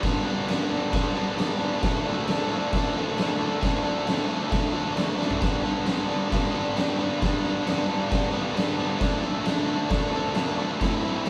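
Garage rock with a swaggering, gritty strut at 134 BPM, this short excerpt pairs an up-front, double-tracked overdriven electric guitar riff moving between G and Dm with an oversized, low-tuned acoustic drum kit, fat in the snare, boomy in the kick and saturated in tone, which throws in a fill at 5.2 seconds, all captured as a band playing live in one small room with moderate reverb.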